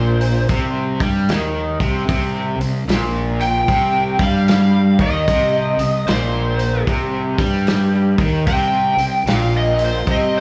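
A slow, swung 4/4 groove at 75 BPM drives this smoky, brooding fragment of blues rock and southern rock power trio music in C minor. It rests on a single C minor chord and comes across as a live club gig heard through the venue's PA with small room reverb. An up-front overdriven slide guitar carries a bright melody with slapback echo, while a double-tracked, hollow-body semi-hollow guitar plays a picked riff colored by harmonic tremolo and slapback echo, and a round, fuzzy fingered bass anchors the low end; a muffled, lo-fi vintage drum kit with a tight kick and rolled-off top enters at 0.2 s on hi-hat, kick and snare.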